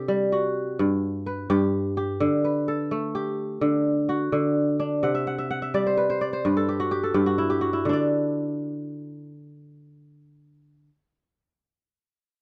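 West African traditional music in a flowing 12/8 at 85 BPM, this joyful short excerpt from a longer piece features a solo kora playing ringing, crisp arpeggios up front, spanning G2 to F#5. A kora fill arrives at 5.0 seconds and runs to 7.8 seconds, as the piece moves from its opening section into a second, briefer one. Light reverb and a dark production surround the fingerpicked strings.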